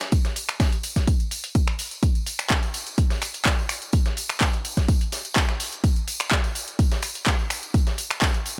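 A dry, close-sounding house groove cut from a longer piece, bittersweet yet energetic, built entirely from percussion in a straight 4/4 feel. An overdriven, punchy electronic kick sits up front, and an overdriven house kit adds bright hats, finger snaps and handclaps. A gritty, sampler-style soul kit sits further back, its filtered hi-hat pumping with sidechain compression and its medium-tuned snare thinned by a high-pass filter, while a live-room tambourine adds an acoustic shimmer that carries through the whole 8.6 seconds.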